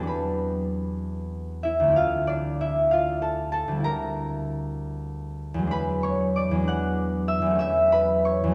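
Gentle and wistful, this classical fragment, cut from a longer piece, features a solo concert harp drifting through a lilting 6/8 with uneven, rubato beats and lush extended chords such as Dm9, E13 and Dmaj7/E. The warm, ringing, fingerpicked harp sits up front and spans from D2 to F#6 over its 8.5 seconds, while a wet concert hall reverb with a 2.0 s decay gives the sense of hearing it from further back in the room.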